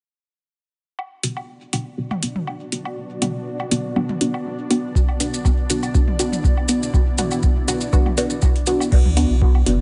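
Heard through light reverb in a digital ambience that tops out at 10.4 kHz, this cut from a longer dub techno piece moves at 121 BPM in straight 4/4, deep and hypnotic in B minor. A muted, detuned chord stab built from sawtooth and square waves with a sub octave sits up front, its filter pluck swept across the section while phaser, dub echo and sidechain pumping shape it over a Bm chord. Overdriven, layered electronic woodblock and toms open at 1.0 seconds with their own dub echo, and a booming analog drum machine adds metallic hats and crash, re-recorded in a small room with a tape-warm tone. Alongside them, a granular cloud pad of blurred, evolving sine tones holds slow-attack chords, carrying built-in reverb and vintage 12-bit sampler grit. From 5.0 seconds a deep, up-front electronic kick and grainy, close maracas join, and at 8.9 seconds a round sine sub bass arrives, pumping beneath the groove.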